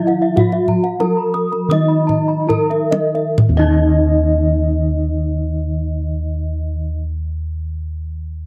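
Round, beating bronze gongs sit up front in this shimmering, ceremonial Balinese gamelan fragment, underpinning a full, close-miked metallophone melody struck with a wooden mallet, a mellow, padded-mallet metallophone accompaniment in the background, and two ringing metallophone arpeggio lines (one horn-mallet part in a boxy small room, one dry wooden-mallet part), all with paired-tuning shimmer and cassette tape colour, while deep, hard-handed kendang drumming plays until 3.8 seconds as the opening section slows before the second section begins at 3.4 seconds, the whole home cassette recording carrying a light reverb.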